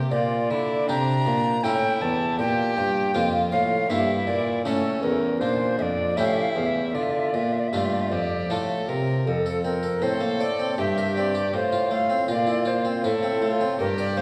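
An airy, chiffy tenor recorder carries the melody in this solemn, flowing baroque-style sonata movement at 79 BPM in 3/4, set over a bright, plucked harpsichord, a single rich, vibrato-laden violin on the second line and a warm, distant bassoon bass, moving from D minor to F major at 9.3 s within a wet recital hall heard from further back.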